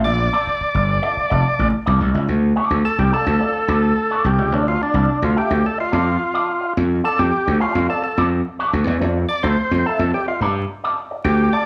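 Hypnotic and cool, this funk excerpt at 107 BPM in D minor features an overdriven tonewheel organ with thick, key-clicking percussion carrying the melody and taking a solo from 2.3 seconds, over a growly, punchy slap bass and a bright, twangy electric guitar with an envelope filter, moving from a rootless Bbmaj9 through Dm7 to F6 in a live room with moderate studio reverb and vinyl crackle.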